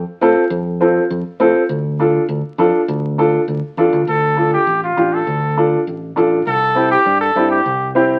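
Driving and danceable, this short Latin cut from a longer piece moves in a straight four over chords of F, D minor and C. A dark, woody upright piano sits up front with a mellow, vintage tone, while a round, punchy fingered electric bass holds the low end, and a clear trumpet with light vibrato enters at 4.1 seconds for an up-front, pop-style solo. The whole thing carries the crackle of a very old 78 rpm record, set in a moderate studio reverb.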